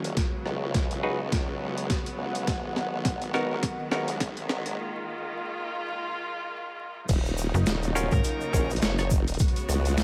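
A swung 16th-note groove at 104 BPM in 4/4 drives this swaggering, gritty glitch hop in Eb minor, cut from a longer piece. An overdriven, thumpy electronic kick and a pitched-down boom bap sampler-style kit with a high-tuned snare, rim clicks, hi-hat and crash sit up front, while a formant-sweep wobble bass growls with saturated sawtooth bite and chorus. Behind them, a lush, distant string section holds sustained chords that pump against the beat, and a deep, warbling ambient pad hovers very quietly during the build-up. Twangy clav stabs through a combo amp cut in with filtered delay, then a break at 4.8 s gives way to the drop at 7.1 s, where a grainy egg shaker and a snappy, metallic FM slap bass enter. A dark fuzz lead guitar adds a brief distorted phrase from 8.1 s, all wrapped in light digital reverb and vinyl crackle.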